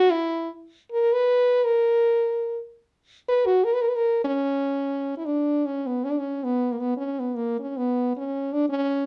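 Restless and fiery in spirit, this brief Balkan folk passage unfolds in free time, cut from a longer piece. A lone French horn carries the whole 9.1 seconds, its tone warm and present, shaded with a light vibrato and a soft attack that reflect a classical style of playing. The horn sits up front, ranging from A#3 to B4, and moves from an opening phrase into a second section at 5.2 seconds. A small room adds a wet reverb with a short tail, wrapping the instrument in a dark, warm production.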